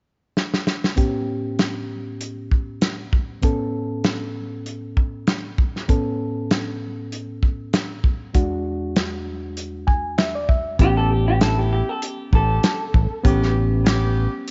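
Lightly reverberant small-room sound frames this laid-back, gritty soul blues, where a saturated, up-front drum kit opens with a fill ahead of a reedy, clean electric piano, and at 10.8 seconds a round, punchy fingered bass, a tight horn section holding vibrato chords, and a twangy, slightly broken-up guitar through a small old amp join, the guitar taking a brief solo.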